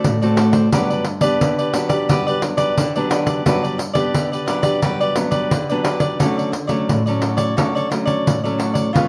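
Lively and joyful, this short samba and choro fragment moves at 88 BPM in a straight 4/4 feel in G major, with a crisp picked cavaquinho and a fingerpicked nylon-string guitar sharing the accompaniment while a jingly pandeiro, struck with hard hands, drives the percussion. All three sit up front in a moderate large studio reverb, with the guitar sounding small beside the cavaquinho's warm, crisp attack. The harmony moves from D7 to Gmaj7 early on, then shifts to a new section on Dmaj7 at 6.2 seconds.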